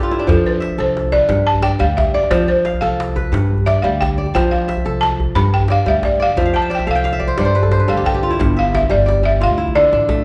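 A large studio's wet reverb surrounds a band playing live together in one room, with the kora and balafon sitting up front in this short cut from a longer piece. It is flowing, warm West African string and xylophone music in a straight 12/8 at 118 BPM, counted in dotted quarters. The fingerpicked kora rings out crisp arpeggios across a broad range, adding fills at the opening and again from 6.4 to 8.4 seconds. The woody, buzzing balafon, struck with rubber mallets and carrying a dry, vintage, band-limited tone, takes a solo melody through the first 8.4 seconds. Beneath it, a tight, cracking djembe played with soft hands sounds close and dry, while a pizzicato upright bass on gut strings adds a thumpy low end. The harmony alternates between F and G, and a new section begins at 8.4 seconds before the chords land on D minor about a second later.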